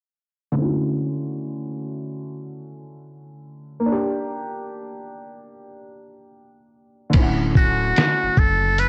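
Lo-fi hip hop excerpt with a mellow, cosy swing, opening on a soft, felt-muted upright piano under a filter sweep, joined at 7.1 seconds by a round sub bass and a thumpy, pitched-down sampler kit with a fat snare and 12-bit grit, before a buzzy, breathy metal-muted trumpet enters at 7.6 seconds with light vibrato, all set in light reverb with a cassette-home-recording feel.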